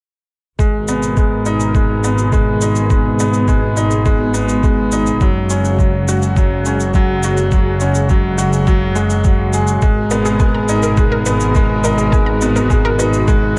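A bright, woody upright piano sits up front, playing a riff with a long, natural sustain that is softened by a low-pass filter and echoed by digital delay. This is hypnotic, melancholic piano and strings electronica in a straight four, cut from a longer piece. Beneath it, a bowed double bass section holds a smooth, even low line with vibrato and sidechain pumping, alongside a muffled, thumpy kick drum that is compressed, pitched down and tape-warm. A faint electronic shaker adds a light pulse, while a thick, airy sawtooth pad sits in the background, sustaining chords through chorus and phaser as the harmony shifts between G#madd9 and F#sus2. At 10.1 s a round, detuned analog pluck enters with fast-attack, decaying arpeggios, treated with chorus, delay and pumping, and it stops at 13.1 s. Light digital ambience and a dark production shape the overall sound.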